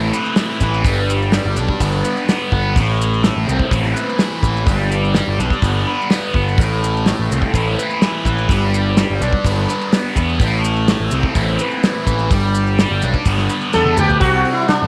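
A thick, double-tracked fuzz guitar drives this dark, hypnotic psychedelic rock excerpt, its bright, distorted riff pushed up front and colored by a phaser as it moves in A minor at 126 BPM in a straight 4/4. Beneath it, a picked electric bass with overdriven fuzz sits equally forward, while a damped 70s drum kit keeps a dry, tight pulse with hi-hat, kick, snare and toms under a rolled-off top. Grainy maracas rattle softly in the background through nearly the whole passage. The harmony circles between Amadd9 and G before landing on C at 14.2 seconds, just after a drum fill that begins at 13.7 seconds. As that fill begins, a sitar enters with a buzzing, shimmering phrase, its sympathetic strings and slapback echo lending an exotic glint to the close. Light studio reverb surrounds the whole mix.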